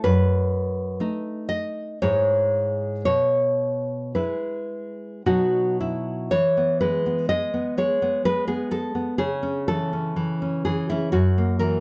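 Romantic solo classical guitar in 3/4 with rubato, this nostalgic, tender fragment features an up-front, full-bodied nylon-string guitar, fingerpicked with audible finger squeak, moving through B7/F#, E/G# and C#m before reaching F#7 at 11.1 seconds, all set in moderate studio reverb.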